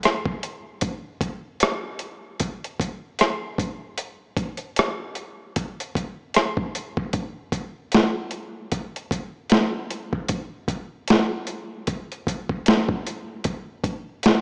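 Heard through a small-speaker sound with a moderate concert-hall reverb, this short R&B cut has a smooth, late-night mood and a swung sixteenth-note feel. A dusty, sampler-style soul drum kit plays throughout, placed up front, with a thumpy kick, a medium-tuned snare, rim clicks and hi-hat. Compression and overdrive give the kit a gritty edge.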